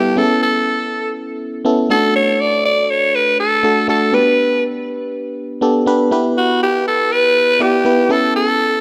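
A raspy alto saxophone carries a bright, gritty melody with vibrato and scooped notes over a glassy, bell-like FM electric piano with chorus, both up front from the start of this romantic, uplifting pop cut at 121 BPM in D major, lightly swung on the sixteenths, moving through Aadd9, D/A, G and Em chords in a lush hall reverb, running 8.8 seconds from a longer piece.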